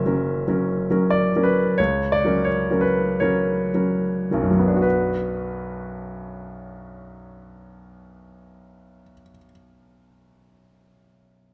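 Melancholic and yearning, this short excerpt from a romantic nocturne for solo piano unfolds in B minor at a slow 34 to 48 BPM in 4/4, with a free, rubato feel. A baby grand piano carries everything alone, its tone warm, natural and up front, ranging from a deep F#1 up to E5. The opening passage slows down through its first 4.8 seconds, resting on an F#7 harmony before settling onto B minor as the second section begins. Close, detailed microphones capture the instrument intimately, while a moderate recital hall reverb with a 1.5-second decay gives the notes a gentle sense of space. The piano plays from the start until 11.5 seconds, leaving an impression of quiet longing cut from a longer piece.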